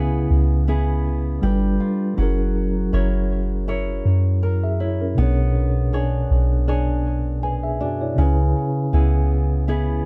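A dark, warm production sits in a modest booth ambience with a short, snug tail, giving this 10-second snippet of contemporary R&B a moody, late-night feel. At 80 BPM in 4/4 with a light sixteenth-note swing, the piece moves unhurriedly in B dorian, drifting through C#m7, G9 and F#7 before resting on Bm69 and returning to C#m7 near 8.2 seconds. A mellow tine electric piano carries the accompaniment throughout, its clean tone heard through built-in speakers. A thumb-plucked flamenco guitar spins acoustic arpeggios with a trailing delay, adding a warm texture. Underneath, a soft 808-style bass sits up front, its round, sine-like notes striking quickly and then decaying into a deep low end.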